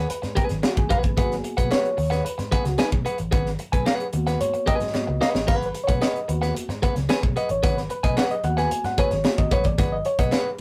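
Hypnotic and funky, this short funk cut from a longer piece sits on a single G#m7 chord in G# minor at 112 BPM, with a reedy, slightly out-of-tune electric piano taking the lead with stabs throughout, while a clean, compressed electric guitar adds picked accompaniment up front. Underneath, a dark, round, foam-muted picked electric bass anchors the low end, and a polished fusion drum kit with a high-tuned snare, punchy kick, hi-hat and splash cymbal drives the groove, marked by a drum fill at 4.9 seconds. A very quiet group handclap joins at 0.6 seconds, and the whole take has the rough, saturated feel of a rehearsal-room recording in a small, wet booth.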